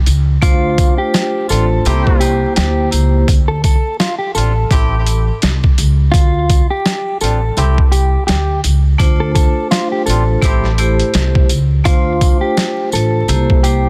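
A gritty, thumpy sampler-style boom-bap kit sits up front with a swung feel, joined by a woody pizzicato upright bass and jingly sleigh bells tucked in the background, setting a moody, dark hip-hop groove in this cut from a longer piece. A clean, compressed electric guitar carries the melody through a delay. A ringing vibraphone with slow motor vibrato accompanies until 3.3 seconds and returns at 9.0, while a distant horn section adds delayed stabs from 1.5 seconds. Vinyl crackle and small-room ambience colour a dense, heavily limited master.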